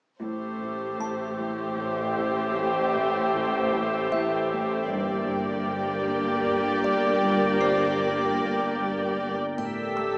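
Suspense film score cut from a longer piece, ominous and mysterious in a slow triple metre, where an up-front viola section carries rich, smooth accompaniment beneath a soft, sul tasto violin melody, while two cello sections and a dark double bass section with portamento sit low and quiet underneath. A morphing, warbling wavetable pad with chorus and a detuned sawtooth drone with chorus and phaser enter around 1.0 and 1.3 seconds, as a delicate, tinkling music box adds texture. At 9.6 seconds the harmony shifts and a faint triangle and a lush high violin section appear, all set in a wet scoring-stage reverb with a small-speaker sound.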